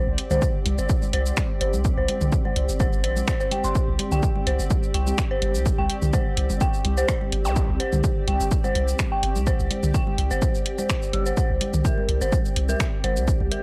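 A punchy, tape-warm electronic kick sits up front in a groove with a light swing, while an analog drum machine adds finger snaps, hi-hat and shaker to this sparse, quirky slice of minimal techno. Overdriven electronic toms and congas sit in the background, layered and touched with analog delay. Underneath, a deep, saturated sine sub bass with a pitch-drop attack pumps against the kick, holding a low register. The riff comes from a dark, detuned FM synth bell, eerie and inharmonic, its fast attack decaying into a long release through chorus, phaser and analog delay. A granular cloud pad drifts behind it all, blurred and evolving with its own reverb and a slow attack, and a brief electronic zap flickers past at 7.5 seconds. The sound is dry and gritty, like a hardware recording cut from a longer piece.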